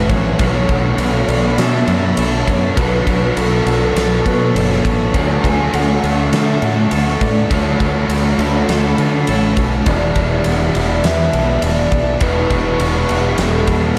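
A soft, round sine lead with chorus and analog delay sings a wistful melody over a shimmering, retro pulse-width pad, while a very quiet twangy guitar fingers arpeggios and dark fuzz and crunchy overdriven guitars churn riffs in the background, the crunchy one trailed by reverse reverb. A growling, punchy fingered bass and a huge arena kit, with a fat snare, bright ride cymbal and pumping hall sound, drive this straight 4/4 shoegaze and dream pop passage at 102 BPM through Bm9, Dmaj7 and E7sus4. The whole dreamy mix is soaked in a vast 7.7-second reverb, and this 14-second cut is lifted from a longer piece.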